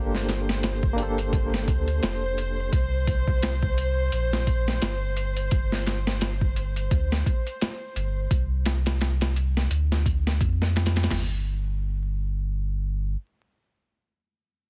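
A reedy, clean electric piano with tremolo and tape echo opens this melancholic, cinematic trip hop excerpt in G minor. Beside it sit dark, bowed chamber strings played sul tasto with light vibrato, and a deep, round sine sub bass. The tempo is 86 BPM in 4/4, with a swung 16th-note feel. A sampler-style boom bap kit of kick, snare, hi-hat and toms, re-recorded in a small room, sits up front, overdriven and gritty, with a thumpy kick and a medium-tuned snare. The electric piano drops out at 2.7 seconds and the strings at 8.3 seconds, while the sub bass continues until 13.2 seconds. The chords move from Gmadd9 through C5 and G5 to a brief D minor, all in a dry, dense, heavily limited master with vinyl crackle underneath.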